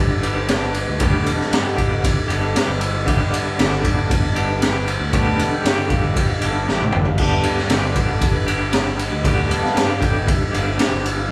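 A live-in-one-room sound with a moderate large-studio reverb frames this hazy, kaleidoscopic psychedelic rock excerpt in a straight 4/4, where a gritty, punchy garage drum kit sits up front with a high-tuned snare and drops a fill at 6.7 seconds, a bright, twangy electric guitar plays a riff through tremolo, a fuzzy, round picked bass holds the low end, and a reedy, nasal hand-pumped harmonium breathes sustained chords in the background.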